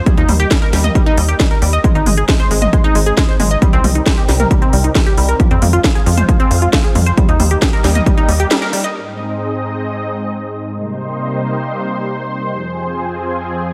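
Silky, detuned string pad chords with ensemble chorus and vibrato open this uplifting, euphoric trance excerpt, swept by a filter, while a tight sawtooth arpeggio with a plucked filter, chorus and digital delay drives above them. An up-front, overdriven electronic kick lands almost at once with a layered techno kit of cracking snare, smooth filtered hats and toms, and a punchy, mellow sawtooth-and-square sequencer bass. The pad, arpeggio, bass and much of the kit pump against the kick in a straight 4/4 pulse, all set in light reverb and a digital ambience. The harmony cycles through Eb, Ab, Cm7 and Fm. The kick drops out at 8.5 seconds, on a full-band accent, and once the arpeggio and drums stop at 8.9 seconds, the bright pad carries the chords alone until 13.7 seconds.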